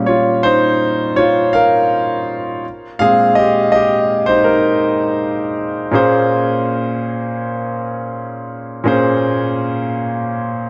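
Bathed in a lush hall reverb with a 3.0-second decay, this short cut from a longer R&B piece at 82 BPM in Bb dorian features a concert grand piano alone, its deep bass, natural tone and long sustain sitting up front through a touch of tape echo as it moves from Eb9/Bb to Abmaj9/Bb and settles on Bbm9 at 5.9 seconds, carrying a longing, sensual mood.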